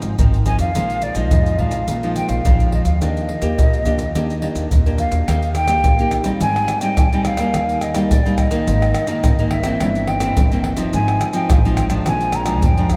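A straight 4/4 samba-and-choro groove at 106 BPM opens the recording, driven by a percussion section of maracas, pandeiro, tight surdo and tamborim, played with hard hands and placed up front as if in a live room. Beneath it, a pizzicato upright bass with steel strings gives a woody low end, while a fingerpicked nylon-string guitar supplies full-bodied, deep classical accompaniment, its finger squeaks audible close up. At 0.5 seconds a breathy, mellow jazz flute enters with the melody, sounding distant and hollow, touched by vibrato and tongued notes. In Eb major, the harmony moves from Ab6 and Bb7sus4 to Ebmaj7, then shifts at 5.3 seconds into a new passage that passes through Abmaj7, C7/G and Fm7/Ab before settling on Bb7. The whole piece is bathed in a huge ambient reverb that places it in a vast, echoing space, giving this festive, sunny fragment from a longer piece an airy glow.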